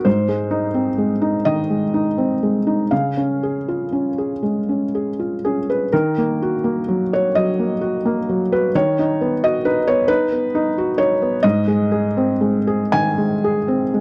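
A slow, rubato sway in 6/8 carries this brief, intimate and wistful neoclassical minimalist piece, cut from a longer work and played by a lone felt-muted upright piano from 0.0 to 14.0 seconds. The piano sounds soft, mellow and vintage, with short sustain and an up-front presence, and it moves through Ab, Db, Ebm, B/D# and back to Ab as the same opening idea returns at 5.9 seconds. The sound is a dry, close recording in a 1970s studio style, touched with light reverb.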